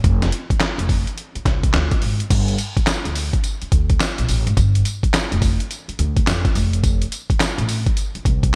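Bouncy and punchy, this short cut of new jack swing R&B in G minor moves at 106 BPM in 4/4 with a 64% swing on the sixteenths. A gritty, compressed sampler-style drum kit sits up front with a thumpy kick, medium-tuned snare, hi-hat, handclaps, tambourine and crash cymbal, all bathed in gated reverb. Beneath it, a woody pizzicato upright bass with steel strings holds the low end between F1 and F2, and the whole mix carries a gleaming 1980s-style digital sheen with light digital ambience.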